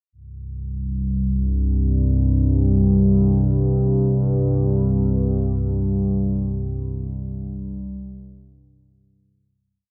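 A wet, cathedral-sized reverb with a six-second tail surrounds this short ambient piece, which unfolds in free time and is tuned to A4 = 441 Hz. A lone analog drone carries the whole work from 0.1 to 9.9 seconds, sitting up front and low in the register, between C2 and G2. Its tone blends sawtooth and pulse waves with pulse-width modulation, and a chorus effect colors its warm, mellow, evolving sound. The drone rises on a slow attack and holds a sustained C5 chord, its long release melting into the vast reverb. The mood is ominous and dark, and a fade-out beginning at 5.0 seconds carries the piece to its close.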